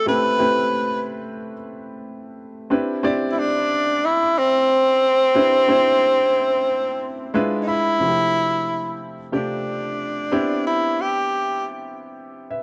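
A breathy tenor saxophone and a clear grand piano begin together in this romantic, smooth soul excerpt, set in 4/4 with a lightly swung sixteenth-note feel. The saxophone carries the solo melody up front in a jazz style, its tone punchy with vibrato, scooped notes and a smooth top, colored by an analog delay. The piano accompanies across a broad range, sounding intimate and natural, with audible action noise and a close, up-front presence. Harmonies move from Am9 to Cmaj9 and then E7b9, as the piano plays a short fill from 7.0 to 8.0 seconds before the second section opens on G7sus4/C and returns to Cmaj9. The saxophone stops at 11.7 seconds, and the piano carries on alone until the cut at 12.6 seconds, all within a moderate plate reverb that gives the pair a lingering space.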